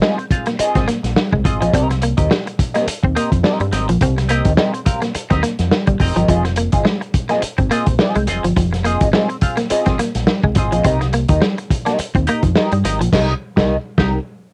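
Cool and driving, this funk excerpt at 105 BPM rides a swung 16th-note groove in F minor. A muffled, lo-fi vintage drum kit with a punchy kick sits up front beside a twangy clean electric guitar run through wah, while a bright semi-hollow electric guitar plays the riff, all three carrying a cassette-tape tint. A dark, round dub bass enters at 0.6 seconds, the harmony moves from Fm7 to Cm7 at 10.8 seconds, and a band accent lands at 13.1 seconds as the riff guitar drops out, all bathed in light reverb on a home cassette recording.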